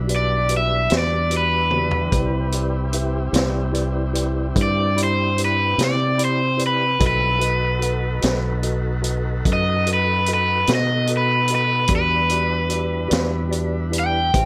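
A slow 12/8 pulse with a straight feel carries this smoky, soulful blues, cut from a longer piece. A vintage drum kit sits up front with a punchy kick, a high-tuned snare and a rolled-off top, using hi-hat, snare, kick and toms, with a short fill from 1.7 to 2.1 seconds. Round fingered electric bass anchors the low end, while a thick tonewheel organ holds sustained chords through a slow rotary speaker with a light crunch of drive. A worn, slightly out-of-tune tine electric piano adds clean accompaniment, and a bright, overdriven electric guitar carries the picked melody. The harmony moves from Em7 to Cmaj7, then B7, and returns to Em7 at 11.9 seconds, set in light reverb.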